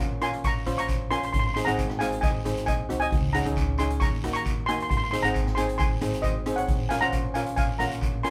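Shimmering lead steel pan on medium rubber sticks carries the melody up front over bright double-seconds pan chords struck with hard rubber sticks, a woody, thumpy pizzicato upright bass in the background, and an airy street-band drum kit of hi-hat, boomy kick and rim click, with a raspy guiro joining at 0.2 seconds in this festive, carefree calypso excerpt at 135 BPM in straight 4/4, cycling through Bbm, Ab, Dbsus2 and Ebm as the band plays live together in a small room with moderate reverb.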